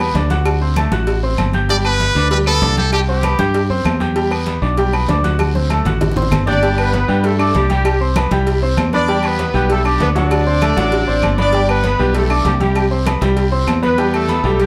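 A forceful trumpet with vibrato and scooped notes takes a brief solo up front at 1.7 s in this sunny, festive salsa excerpt, and a smooth-topped horn section carries the melody from 6.5 s. A bright grand piano with audible action noise and long sustain plays the accompaniment over a dark, punchy fingered electric bass, while ringing congas, round low bongos with cowbell, metal-shell timbales with agogo bells, woody claves and a raspy, vintage guiro sit in the background. A drum fill at 5.4 s leads into the second section, and a wet studio reverb places the band further back in the room.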